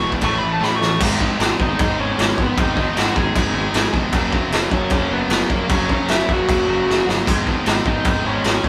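Punk rock at 153 BPM, upbeat and rebellious, played live in a small room, with a dark, smooth overdriven lead guitar carrying the melody and soloing through the first second, with drum fills at 0.6 and 6.9 seconds marking the turns. Underneath, three picked electric guitars grind out the riff in the background (one bright, one sludgy, and a double-tracked crunchy part kept very quiet), while a growly fuzz bass sits low beneath them. Up front, a raw garage drum kit of boomy kick, medium-tuned snare, crash and splash cymbals sounds saturated and gritty with a rolled-off top, as the chords move from G#m to F# and back in this short cut from a longer piece.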